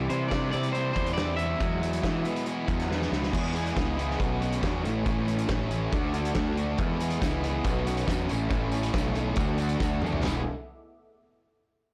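A straight 4/4 beat at 139 BPM drives this carefree, jangly indie rock excerpt in E major, played on a loose, roomy drum kit with a punchy kick, dark cymbals and soft clipping on the snare, plus short fills where the sections change. Up front, a fuzz-laden picked electric bass holds the low end with overdrive. Above it, a bright, compressed fuzz guitar plays riffs alongside a biting overdriven guitar that sits in the background with subtle chorus and slapback echo. A clean electric guitar picks a short melody in the opening seconds, also treated with slapback echo. From 3.9 seconds a very quiet, detuned analog pad adds moody sustained chords, and a tambourine jingles in the background from 7.0 seconds. The whole recording is blown-out and overdriven, with light reverb, and moves through chords such as Emaj7, Bsus2, A and Dadd9.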